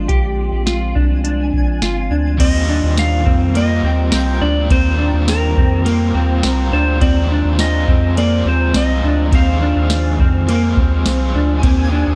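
Dream pop at 104 BPM in Eb major, blissful and ethereal, this section of a longer piece sets a clean, slide-played lap steel melody with delay over a mellow, fingered electric guitar arpeggiating through ensemble chorus and delay, while a warbly, detuned tape-like pad holds sustained chords in the background. A round, nasal analog bass and a dry, tape-toned vintage rhythm box with deep kick, crisp snare, metallic hats, ride, crash and tambourine sit up front, and at 2.4 seconds a bright, crunchy overdriven guitar joins with tremolo as the chords move from Bb7 to Eb69. The overall sound is close and fairly dry.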